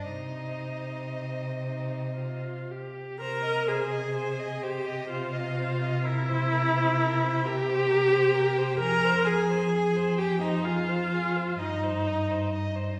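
Classical string quartet music in a slow, yearning and solemn romantic movement in a rubato six-eight, where a smooth, even first violin sings the melody over a distant second violin gliding with portamento, while an up-front, focused rich viola and a soft-attacked warm cello, both with vibrato, carry the accompaniment and bass through a dark progression that turns to C7 at 6.0 seconds before settling, all bathed in the wet reverb of a recital hall in this short cut from a longer piece.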